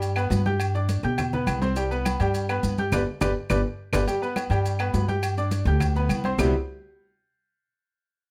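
Sunny and danceable, this short salsa excerpt drives along at 207 BPM in a straight 4/4, cut from a longer piece. A bright upright piano sits up front with a brilliant, intimate tone and audible action noise, while the upright bass, plucked on gut strings, gives a dark, thumpy foundation just as close to the ear. The percussion fills out the groove: ringing, medium-tuned congas, metal-shelled agogo bells and timbales heard close and dry, grainy maracas set in a live room, and woody claves entering at 0.2 seconds and sitting in the background. Harmony moves from G to C5 and back to G, and the band hits an accent from 2.9 to 4.1 seconds, with a drum fill joining at 3.2 seconds. The recording is detailed and closely miked with light reverb, landing on a Cmaj7 at 6.4 seconds.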